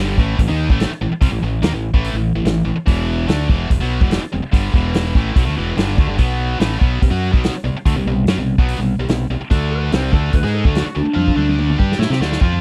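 A dry, close-miked recording with a small-room feel and a 1970s studio character opens this sunny, swaggering classic rock excerpt at 145 BPM, driven by a bright, double-tracked distorted guitar riff sitting up front over a growling, overdriven fingered bass and a vintage acoustic kit with a punchy kick and medium-tuned snare. The chords move from A5 through E5, Fadd9, Em11, B5 and C5 to D5, and at 9.5 seconds a slightly broken-up electric slide guitar adds a second line until 11.8 seconds. A drum fill from 11.2 seconds carries the section to its close.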